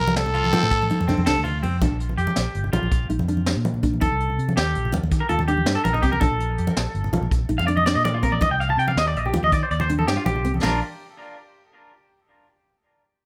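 A raspy, growling trumpet opens up front for just over a second in this carefree, joyful highlife guitar band clip, cut from a longer piece in Bb major at 109 BPM in a straight 12/8. After a brush drum fill from the vintage kit, with its high-tuned snare and punchy kick, a twangy clean electric guitar takes a picked arpeggio solo from 1.8 to 10.6 seconds, washed in tape echo. Beneath it, a round, dark fingered bass, low-tuned, damped congas in the background, and a full-bodied fingerpicked nylon-string guitar with audible finger squeak sit in a dry, close sound over chords moving between Bb and Eb.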